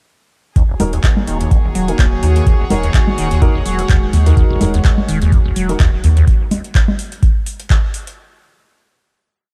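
Acid house with a trippy, gritty mood, driven from 0.6 s by an up-front, overdriven four-on-the-floor electronic kick and a booming analog drum machine of metallic hats, low congas and claps, while a squelchy, resonant acid line with accents and slides rides over a round, off-beat analog bass, a lush detuned unison pad pumps under sidechain, a reedy chamber string section adds slowly shifting chords, and a concert grand piano fires syncopated chord stabs through tape echo in a dark, dry production until the drum machine closes at 8.2 s.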